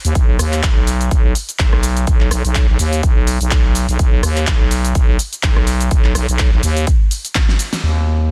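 Bass house at 125 BPM in 4/4, with a 56% swing on the sixteenths giving the groove a slight shuffle, and a gritty, aggressive mood throughout this short cut from a longer piece. A growling, thick FM bass sits up front from the start, its fast attack and sustained notes roughened by tube saturation and pumping through sidechain compression, staying low between B1 and Eb2. A punchy, layered electronic kick enters at 0.2 seconds and drives the track from the front of the mix. Around it, a big-room dance kit of cabasa, handclaps, hi-hat, rim click and a huge snare plays further back, with low-pass filtering dulling the hats, percussion and snare. A drum fill arrives at 7.4 seconds, capped by a full-band accent at 7.7 seconds just before the parts drop away. The production is dense and heavily limited in a modern style, set in a digital ambience.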